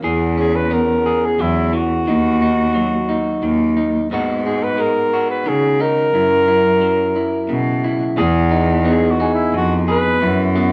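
A slightly broken-up, lo-fi electric guitar through a small old amp and a nasal, boxy bowed cello open this intimate, heartfelt acoustic folk-pop ballad in 3/4, joined at 0.4 s by a dark, smooth-topped cor anglais carrying the melody up front in a classical style with light vibrato, while a ringing, thumb-plucked Celtic harp adds background arpeggios from 8.2 s, all captured as a band playing live in one room and cut from a longer piece.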